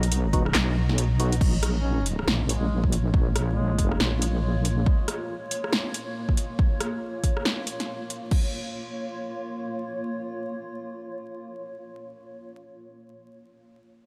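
A wobbling sawtooth-and-sine bass sits up front for the first 4.8 seconds of this heavy, dark deep dubstep excerpt at 139 BPM, in a swung half-time feel in Bb phrygian, over overdriven, layered electronic drum kits with a kick, punchy snare, metallic hats, handclaps, rim clicks and crashes, while a hollow, decaying organ stab with chorus and dub echo sits in the background, a mellow duduk with vibrato and scooped notes enters at 1.8 seconds, and a cloudy, evolving granular pad with its own reverb lingers until 11.8 seconds beneath vinyl crackle and light digital ambience.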